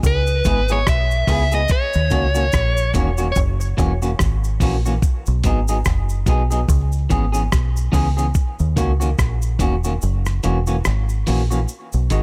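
A hypnotic, spacious dub reggae groove at 72 BPM in 4/4 with a swung 16th feel rides on a round, punchy, foam-muted fingered bass up front and a gritty, compressed sampler-style kit of hi-hat, thumpy kick and rim click, with a faint cabasa in the background and the kick dropping out at 10.0 seconds. A dark, overdriven lead guitar sings a brief dub-echoed line from 0.1 to 3.4 seconds. A slightly broken-up, picked electric guitar carries the C#m7, D#m7, F#7 and B6 changes with its own echo through this dry cut from a longer piece.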